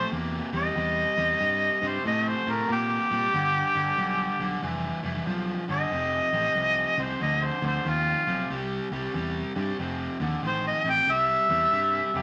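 Soulful and laid-back, this swung electric blues shuffle is led by an up-front, mellow harmonica singing a jazz-style solo melody with light vibrato and scooped notes. A biting overdriven guitar picks the riff beneath it over a round, punchy fingered bass, moving through C7, G7 and F7 changes in a moderate studio ambience. At 12.2 s, as this cut from a longer piece closes, a clean, twangy lap steel slides in with a single compressed high note.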